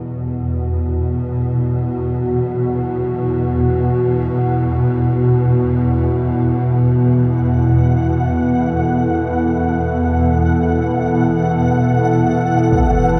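Opening at once on a swarming, ring-modulated drone low in the register and a deep, detuned analog pad holding sustained chords with chorus, this desolate dark ambient drone in free time moves from E5 to Bsus4/E at 6.8 seconds, adds a flickering, grainy granular texture high above at 7.4 seconds, and lands a huge, bright, low-pass-filtered impact at 12.7 seconds, all set in a huge ambient reverb in this cut from a longer piece.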